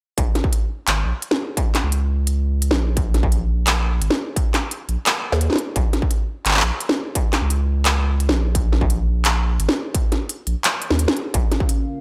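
A thick, saturated sub bass sits up front in this tense, cinematic half-time drum and bass excerpt at 172 BPM in 4/4, its deep sine tone rooted around Bb minor with a fast attack and sustained notes. Beside it, a distorted electronic kick and an industrial drum kit with a clanging snare, crisp hi-hats and handclaps carry the half-time feel, both placed up front and re-recorded in a large room. The kick drops out at 10.6 s and returns at 11.3 s. At 11.6 s a moody analog pad enters softly underneath, a detuned blend of square, sawtooth and triangle waves with a sub octave, treated with chorus, phaser and sidechain pumping. The overall sound is dry and gritty, like a hardware recording with little reverb, and the clip is cut from a longer piece.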